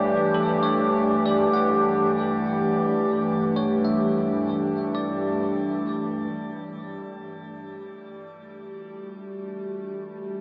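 A warbly, nostalgic pad sits up front in this peaceful, weightless ambient piece in free time, holding dark, detuned chords through chorus and shimmer reverb, moving from Gmaj7 to G5 at 6.3 seconds. A bell-like tine electric piano plays clean, bright arpeggios through phaser, diffuse delay and shimmer, fading out and stopping at 6.8 seconds, while a very quiet, resonant drone with moving overtones holds a steady G3 throughout. The whole sounds as if heard through a small speaker in a cavernous cathedral reverb, cut from a longer piece.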